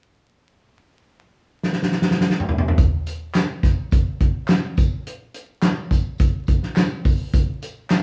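A straight 4/4 soul groove at 105 BPM opens with a drum fill on the natural, up-front kit at 1.6 seconds, its fat snare and punchy kick sounding alongside hi-hat and toms through a warm, uplifting feel. From 3.1 seconds a quieter, band-limited layer of egg shaker, tambourine and group handclaps joins with a vintage acoustic character. The cut from a longer piece sounds like a band playing live in one room, with moderate studio reverb and vinyl crackle.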